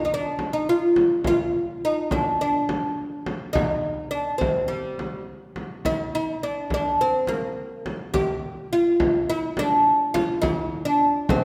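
Turkish makam ensemble music in a straight four, melancholic and soulful, taken from a longer piece. A bright, woody fretless oud with doubled strings carries the melody up front from the start, plucked with a plectrum, while a deep, large frame drum joins at 0.4 s and sits further back in a live room. Both play through to 11.4 s in a wet scoring-stage reverb, with a new passage beginning at 5.8 s.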